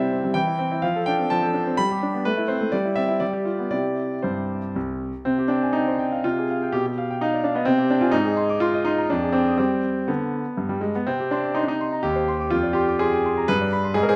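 A brilliant, up-front concert grand piano plays alone throughout this cheerful, elegant excerpt of a classical-period sonatina in C major, tuned to A4 = 438 Hz, moving at 115-130 BPM in a flexible, rubato 3/4 with deep bass notes under a moderate recital-hall reverb, its opening phrase settling on C before a second passage from 5.3 seconds drifts through Ab, Cm and a half-diminished colour to close on G at 13.5 seconds.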